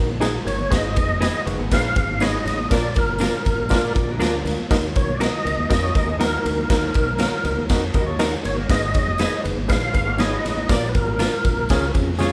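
This is an uptempo 1960s-style soul clip in Eb minor at 120 BPM with a driving, passionate mood, opening on a worn, slightly out-of-tune reed electric piano with fast tremolo and a growly, punchy fingered electric bass. Within a fraction of a second a raw garage drum kit joins, saturated and up front in a pumping stone room, with punchy kick, medium-tuned snare and ride cymbal. A dark, compressed clean electric guitar adds stabs, while very quiet congas play and a jingly tambourine sits in the background. At 0.5 seconds a fat, lightly overdriven tonewheel organ takes the melody, with key click, chorus vibrato and a slow rotary speaker, and from 1.5 seconds a slightly broken-up, lo-fi guitar through a small old amp plays a riff low in the mix. A mellow horn section with light vibrato adds brief jazz-style accents as the band hits together over the Bb chord, and the chords move between Ebm, Abm and Bb before a closing Db, all captured live in one room with light reverb.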